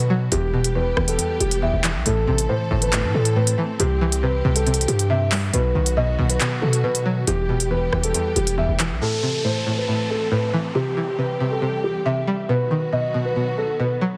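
Set at 138 BPM in 4/4 with a half-time feel, this ominous, cold drill cut from a longer hip hop piece moves through E harmonic minor over a cycle of Em, Am, C and B. A crisp, up-front electronic drum kit of hi-hats, handclaps and rim clicks enters at 0.3 seconds over a punchy, saturated 808-style bass that sounds from the very start with a fast attack and heavy decaying tail, and both drop out at about 9 seconds. A dark, boxy grand piano carries the melody in its mellow upper register with a touch of delay, while a twangy, bright resonator pluck with a sawtooth edge, filter sweep and chorus supplies low accompaniment. Between them, a lush bowed string section holds close, expressive sustained chords with gentle vibrato and a soft attack. When the beat falls away, an electronic downlifter sweeps through from 9.0 to 12.5 seconds as piano, pluck and strings carry the harmony on in a dense, heavily limited master with light reverb.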